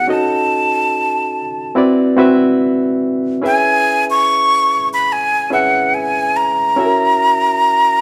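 A slow 4/4 pulse with a gentle sixteenth-note swing carries this short soul passage, which is cut from a longer piece and sets a smooth, cinematic mood. A breathy concert flute sings the melody in its upper register from start to finish, close-miked and up front, with vibrato, a crisp attack and a slightly unsteady, human quality. Underneath, an electric piano plays the accompaniment throughout, its reedy, barky tone bright and lightly overdriven, heard through its built-in speakers and also placed up front. The harmony moves from D#m7b5 to D13 and C#m7 before settling on F#7 near 6.8 seconds. The two players sound as if they are performing together in one stone room, whose wet reverb gives the whole passage a glossy, spacious sheen.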